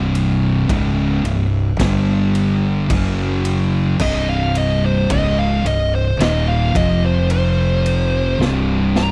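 Ominous and sludgy, this stoner and doom metal passage, cut from a longer piece, crawls at 54 BPM in C minor as two thick, dark fuzz guitars grind out the riff in the background over a bright, overdriven fingered bass with tube saturation and a gritty, saturated small-room drum kit with a punchy kick and rolled-off top, until a compressed, up-front fuzz lead guitar with slapback echo enters at 4.0 seconds and a drum fill closes things at 8.4 seconds, all captured in a dry, close 1970s-style studio sound.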